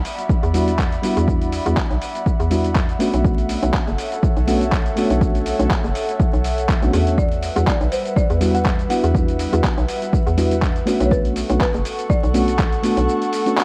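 Hypnotic and smooth, this deep house excerpt moves at a steady 4/4 pace with a light swing in its sixteenths, cycling between Em9 and Bm9 chords. An airy, breathy pad sustains those chords from the start, its chorus and 12-bit sampler grit softened into a pumping sidechain breath. A dusty, sampler-style soul kit of handclaps, hi-hat and shaker sits low and gritty with overdrive, while a punchy, layered electronic kick stays up front until it drops out at 13.1 seconds. Beneath them a hollow, bouncy FM bass knocks through tube saturation, and a mellow, round FM electric piano plays dark, warbling stabs with tremolo, chorus, tape echo and a low-pass filter. At 7.2 seconds a woody, rustic marimba with medium hard mallets enters with a dry, percussive melody through analog delay, over light reverb and a bed of vinyl crackle.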